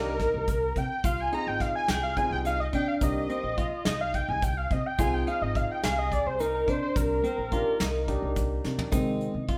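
A thick, bold unison lead with a detuned sawtooth edge, fast attack and vibrato sits up front, carrying the melody through a brooding, driving progressive groove in 7/8 at 213 BPM in eighths, in C minor. Beneath it, an intimate concert grand piano with audible action noise, deep bass and long sustain plays the accompaniment. A dark, clean, picked electric guitar spins arpeggios, and a woody, growly pizzicato upright bass anchors the low end. A soft brush drum kit, airy and polished with a punchy kick and a medium-tuned snare, enters at 0.2 seconds and sits up front, while a grainy, bright egg shaker stays in the background. The harmony moves between Cm7 and Abmaj13 before landing on Ab6, and a drum fill at 8.6 seconds arrives as the lead stops, all of it played live by the band in a stone room with a wet reverb, in a clip cut from a longer piece.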